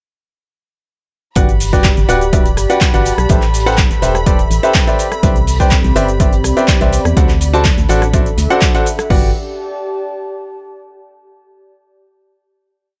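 Euphoric and uplifting, this short piano house piece launches its drop at 1.4 seconds with a clear, up-front grand piano riff of dotted-rhythm chords carrying dub echo, a hollow, organ-like FM bass playing a syncopated line, and a punchy four-on-the-floor electronic kick, while the piano, bass and a background symphonic violin section holding a high note all pump to the sidechain. A layered house drum kit adds metallic hats, claps, rim clicks, shaker and crash, with a muffled, gritty looped breakbeat sitting very quiet underneath. A warbling, nostalgic tape-like pad with chorus and its own reverb drifts through slowly shifting chords and rings on alone after the other parts stop, holding the final chord from 9.1 seconds until 11.0 seconds.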